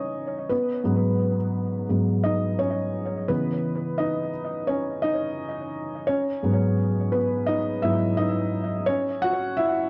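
Nostalgic and reflective, this short hip hop excerpt moves at 86 BPM in 4/4 with a swung sixteenth-note feel in G# minor. A felt-muted upright piano plays alone for the full 9.9 seconds, its tone soft, dark and intimate, with thick felt dulling the hammers while the instrument sits up front in the mix. The part ranges from G#2 to F#5 and carries an analog delay that feeds the echo-heavy character of the sound. The harmony drifts between C#m9 and G#m7, settling on C#madd11 near 8.9 seconds. A wet echo chamber blends with a small room, and a cassette tape quality lends the whole recording a hazy, worn patina that suits its wistful mood.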